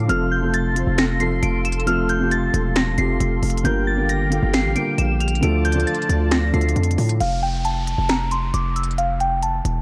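A soft, warbling FM synth bell carries the melody high above a felt-muted upright piano with audible action noise and a detuned sawtooth analog pad, while a heavy, aggressive 808-style bass with a distorted edge sits up front in this wistful yet triumphant half-time trap excerpt. A trap kit of finger snaps, crisp hats and a sharp, overdriven snare joins at 0.1 seconds, and at 7.2 seconds the piano and pad stop as an electronic downlifter and a filter sweep arrive alongside the bell, bass and drums. The production is dark, with light reverb.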